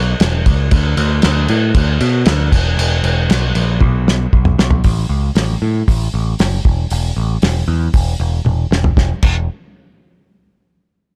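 This dry recording has little reverb, and both instruments sit up front. It is a driving, confident classic rock passage at 116 BPM in a straight 4/4, cut from a longer piece and tuned to A4 = 441 Hz. A growling picked electric bass carries the low end from E1 to B2, its bright, amped tone pushed into overdrive. Joining at 0.2 s, a cloth-damped acoustic drum kit adds thuddy, dark weight: a fat snare, a tight kick, toms, hi-hat and dusky crash cymbals, all with a rolled-off top. Drum fills lead into a new section at 4.8 s and into another shortly before both players fall away by 9.5 s.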